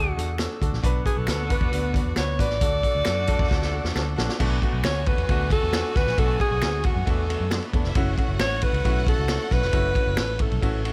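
Uptempo 1960s-style soul with an urgent, passionate mood, led by a clear, close-miked alto saxophone playing the melody up front with vibrato and scooped notes over clear, short-sustaining grand piano, a round, foam-muted fingered electric bass and a punchy vintage drum kit with dark cymbals. An edgy saxophone section adds a background line only until 4.1 seconds, while a rich, bowed string section enters at 0.8 seconds and dry finger snaps click in the background. A drum fill at 3.5 seconds leads into a new section built on Bm7 and F#m7 chords, all with a dry, close sound.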